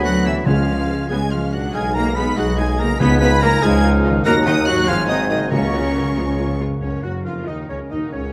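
Classical orchestral music in a stormy, restless 6/8, cut from a longer, dramatic romantic movement, where a lush symphonic violin section carries the expressive, vibrato-laden melody over a very quiet, smooth viola accompaniment. Beneath it, a bright clarinet, pure-toned small flute group, solo oboe and a second, background violin section play a supporting second line, while mellow French horns hold sustained chords and a ringing concert harp spins fingerpicked arpeggios. Focused bowed double basses, a distant tuba and warm cellos anchor the bass, and hard-mallet timpani enter at 0.5 seconds and stop at 7.4 seconds, all set in a moderate scoring-stage reverb.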